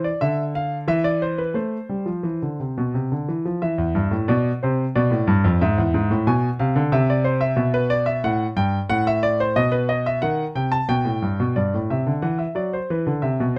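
A clear, up-front grand piano plays an elegant, lively baroque-style two-part invention in A minor at 90 BPM in 3/4, its natural tone captured by close, detailed microphones with little reverb as it moves through harmonies such as Bm7b5, E7 and B7 across a range from E2 to A5 in this short excerpt cut from a longer classical piece.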